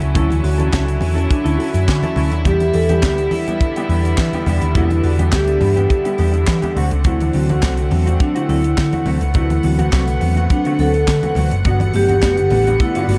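Disco at 104 BPM in a straight 4/4, glamorous and driving, with a vibraphone played with medium mallets carrying a metallic, ringing melody over a chord progression that moves from Dmaj9 through Em7 and D7 to Gmaj7. Up front, a tight funk kit with a high-tuned snare, handclaps, hi-hat and kick sits beside a dark, round, hollow-body picked bass, while very quiet low-tuned congas add close, hard-handed hits. Behind them, a clean, fingered electric guitar with spring reverb and a rich, floating string section played sul tasto fill out the harmony, and a mellow tine electric piano joins the background at 7.0 seconds in this excerpt cut from a longer piece.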